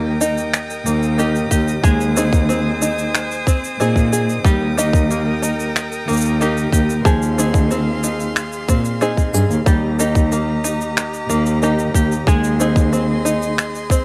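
A rich, bowed string quartet holds smooth chamber chords as a twangy, fingerpicked open-back banjo plays plunky arpeggios through tape echo and a dark, expressive cello carries the bass up front with vibrato, portamento and tube saturation, before tape-warm electronic shaker and finger snaps join at 0.2 seconds and a tight electronic kick drum lands at 1.5 seconds, giving this pastoral, playful folktronica fragment a small-room ambience until the cello drops out at 13.5 seconds.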